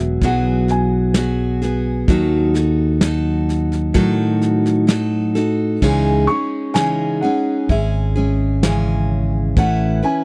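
A dark, woody upright piano carries a melancholic, wistful melody in C# minor from the opening, over bright, full-bodied picked steel-string acoustic guitar and a punchy fingered electric bass, with a soft brush drum kit of kick, snare and crash joining at 0.2 seconds in a slow, straight 64 BPM. This short acoustic folk passage moves from Eadd9 and D#dim into a second section at 5.8 seconds built on C#madd9, touching Aadd9 near the close. The sound is dry and close in a 1970s studio style, with guitar, bass and brushed drums sitting up front while the mellow, boxy piano stays further back.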